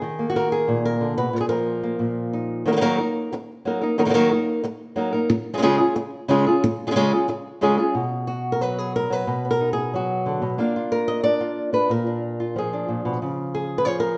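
In a straight 4/4 feel, this dramatic, intense flamenco excerpt features a lone fingerpicked acoustic flamenco guitar, warm and up front with audible finger squeak, moving through Bbsus4, Ebm, Db, B5 and Bb as it rings out in a wet stone-room reverb.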